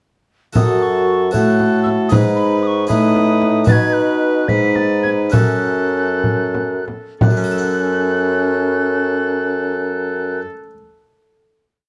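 In a straight 6/8 pulse of 59-78 BPM that slows between 2.9 and 7.2 seconds, this short, solemn and courtly Renaissance-style consort dance in F# dorian sets an airy, hollow soprano recorder melody with crisp chiff over a viola's gut-string chords, a bright trombone's sustained chords, a warm bassoon bass, a nasal harpsichord's rolled chords and a small frame drum's up-front dance rhythm, which stops at 7.5 seconds as the consort holds a final chord in a dark production with light reverb.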